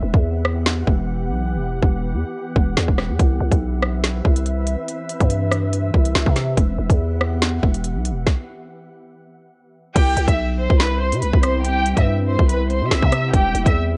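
Drill hip hop at 142 BPM in a half-time feel, tense and dark, where a glassy FM pad with chorus and reverb holds Emadd9 and Cmaj7 chords over a growling, buzzy 808-style bass and an up-front electronic kit of hard-clipped kick, woody snare, crisp hats, rim clicks and crash, with a break at the opening, a stop from 8.3 to 10.0 seconds, and a lush, low-pass-filtered violin section with vibrato and portamento entering at 10.0 seconds, all wrapped in worn, warbling cassette-tape ambience in this excerpt.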